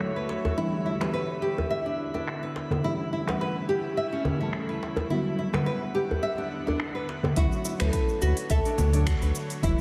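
A fingerpicked nylon-string guitar sits up front, playing arpeggios with delay and slapback echo over Dmaj7, Em7, A7 and Gmaj7 in this earthy, mystical organic downtempo excerpt at 106 BPM with a light 16th-note swing. Around it are dark, soft chord stabs with chorus, phaser and sidechain pumping, a tense, nasal bowed-like drone, a glassy texture of drifting overtones, a tape-warm electronic kit of congas, finger snaps, crisp hats and shaker, and a tight, cracking djembe. At 7.4 s a woody, double-strung oud takes up the melody with echo, and a round, sawtooth-edged analog bass with tube saturation arrives with an electronic kick, all set in a wet concert-hall reverb for a big arena sound.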